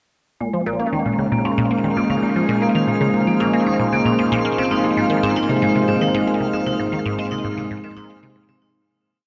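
A squelchy, resonant blip pluck runs a 7-step loop that drifts against the bar, its phaser and tape echo sitting up front beside a hard-mallet vibraphone ringing through a 5-step arpeggiated sequence of its own under a low-pass filter and tape echo. Alongside them a detuned sawtooth pad fades in, sustaining slowly shifting chords with chorus and moving from Bbm7 to Ab at 4.6 seconds, while a sparkling granular texture also fades in, holding a single high note from 1.6 seconds. This brief, mysterious piece of sequencer-driven space music sits in a huge, wet ambient reverb, fading out from 6.0 seconds to a hypnotic close.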